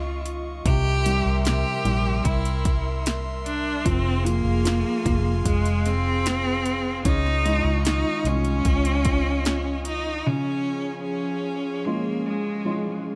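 A digital ambience frames this tender, heartfelt pop ballad excerpt at 75 BPM in Db major, where a bright, focused bowed cello with vibrato carries the melody over a woody upright piano accompaniment, a breathy, chorused pad, a round, foam-muted vintage electric bass and an overdriven deep house drum kit with deep kick, punchy snare and metallic hats, until the bass and drums drop out around 10 seconds and the Dbadd9, C7 and Fm changes settle onto a closing Db chord.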